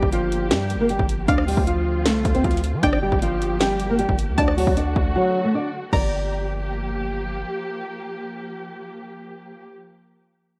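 A half-time trap groove at 155 BPM in G minor opens this melancholic, menacing hip hop fragment, its techno drum kit pairing a punchy kick and cracking snare with metallic hats, rim clicks and crash, sitting up front until the drums drop out at 6.0 seconds. Beneath them a distorted 808-style bass hits hard with a fast attack and heavy, aggressive grit before decaying, running until 7.4 seconds. Leading the melody is a small, thumb-plucked nylon-string guitar, intimate and close, its tone softened by a low-pass filter. Above it a bright, twangy resonator pluck with a nasal sawtooth edge adds a second line through chorus and digital delay, while a veiled, con sordino string section bows lush, dark sustained chords with gentle vibrato, the last part still sounding at 9.7 seconds. The harmony moves through Gm7, Dm7 and D before returning to Gm7, with a brief break just before the second section begins at 5.9 seconds, and the whole mix carries light reverb and the warbling pitch drift of worn cassette tape.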